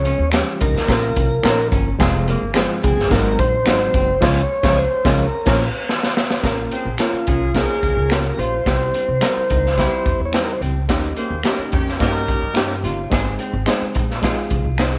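A mellow, round tonewheel organ carries the melody through a slow rotary speaker, over a barky, overdriven reed electric piano with fast tremolo and a woody, thumpy pizzicato upright bass, in a passionate, driving 1960s-style soul cut at 108 BPM, tuned to A4 = 435 Hz. A gritty, saturated garage drum kit sits up front with a punchy kick and dark cymbals, joined by a dark hollow-body archtop guitar riff in the background, very quiet slightly broken-up electric guitar stabs and soft finger snaps, with a band accent and drum fill leading into the second section. A tight horn section with vibrato plays a second line from 6.7 to 12.8 seconds, the organ stops at 10.6 seconds, and light reverb frames the sound as the chords move from Db through C and Eb7 to Ab.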